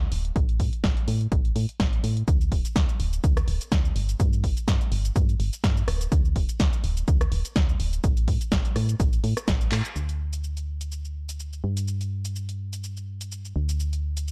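A dark, tape-warm piano house excerpt with euphoric, uplifting energy, where a round, fast-attack FM bass pumps against an up-front punchy electronic kick that drops out at 9.6 seconds, while an analog drum machine supplies cabasa, handclaps, hi-hat, rim click and a punchy snare in a short room, capped by a drum fill and band accent at 9.7 seconds before the track moves into a new section at 10.0 seconds.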